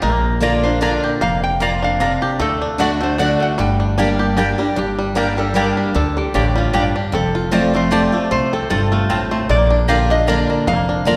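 Bluegrass in a swinging 3/4, haunting and rustic, cut from a longer piece and set in the wet, lingering reverb of a church or concert hall. A metallic, nasal lap resonator guitar played with slide and fingerpicks carries the melody alongside a twangy, percussive banjo, over a full-bodied dreadnought guitar and a growly, thumpy pizzicato upright bass. A woody mandolin adds stabs from 0.4 seconds as the chords move from Bb through D and G minor to F.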